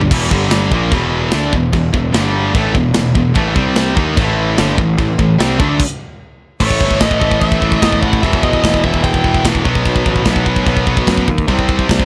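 Dry, this short cut from a longer heavy metal piece charges along at 148 BPM in E minor, tuned to A4 = 436 Hz, with an epic, relentless mood, as two picked, distorted guitars (one bright and forward, one high-gain and set back) drive riffs over a fuzzy, overdriven picked bass and a big-room drum kit of tight kick, snare, toms, crash and bright china, until the band halts briefly at 5.8 s before a warm high-gain lead guitar melody enters from 6.6 s to 9.4 s.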